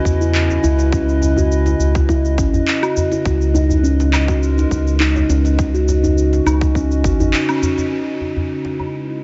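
A round, deep analog bass sits up front in this hypnotic organic downtempo excerpt, its dark, nasal tone pumping with sidechain until it stops on a band accent at 7.3 s. Above it, a steel tongue drum struck with soft rubber mallets rings out pure, meditative arpeggios in a boxy small room, trailed by tape echo. Further back, a warbling, lo-fi pad holds nostalgic sustained chords with chorus, built-in reverb and its own pumping, moving from C#m7 through G#madd9/C# and B/C# before returning to C#m7. The straight 4/4 groove comes from a tight, overdriven electronic kick and an overdriven, filtered kit of electronic shaker, handclaps and woodblock, both re-recorded in a large room, with a hard-handed acoustic djembe sitting in the background. At 7.9 s a very quiet bronze singing bowl enters, metallic and close-miked with slow beating, over the lingering pad, percussion and djembe, leaving the whole passage feeling warm and trance-like with a soft, rounded top end.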